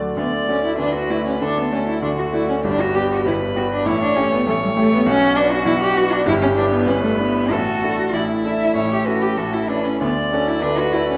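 A bright baby grand piano opens this lively, spirited classical-period piano trio movement, which is cut from a longer piece, and within a fraction of a second a single bowed violin and cello join it at 0.2 seconds. The violin carries the melody with a rich, focused tone, vibrato and a smooth top. The cello plays a second line in a warm, expressive voice, sliding between notes with portamento and adding its own vibrato. The piano supplies the accompaniment from its deep bass up into the middle register, its brilliant, open sound ringing with long sustain and sitting up front. The quick pulse is shaped with a flexible rubato feel, and the harmony travels from D through G, A7, Bm and Em7/G to a suspended A that settles on A before returning home to D at 10.0 seconds. A reverberant recital hall surrounds the trio, giving it a generous, airy setting until the passage ends at 11.2 seconds.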